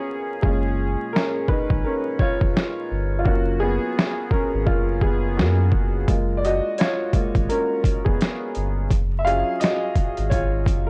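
A woody, slightly detuned upright piano sits up front through this reflective, hazy lo-fi hip hop excerpt at 85 BPM, its vintage tone softened by cassette tape and a low-pass filter as it rests on Gbmaj9 before moving to Ebm9/Gb at 8.9 seconds. From 0.4 seconds a deep, full sub bass with a sine-like, sustained tone joins a compressed, pitched-down boom bap kit whose thumpy kick, medium-tuned snare and hi-hat carry overdriven 12-bit sampler grit in a swung 4/4. The whole track sits in a dry, gritty hardware sound with vinyl crackle and a digital ambience.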